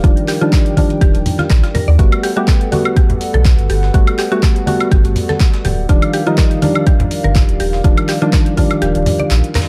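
Deep house at 123 BPM with a light 16th-note swing, this sunny, soulful excerpt moves between Ebmaj9 and Gmaj9 chords inside a dark production dusted with vinyl crackle and a light digital ambience. A deep, up-front electronic kick anchors the groove until 8.8 seconds, when it drops out, while a round, sine-like sub bass with tube saturation holds down the low end. Percussive, organ-like stabs sit prominently in the mix with tape echo and a filter sweep running through them, over a hollow, flute-like pad with a soft attack and long release. A woody, mallet-like FM pluck spins arpeggios with chorus and tape echo, and every melodic and bass part breathes with sidechain pumping. The drums layer a produced house kit of handclaps, dark hats and woodblock with a gritty, pitched-up breakbeat kit tucked in the background, while close, low-tuned congas with a thick skin join at 0.8 seconds.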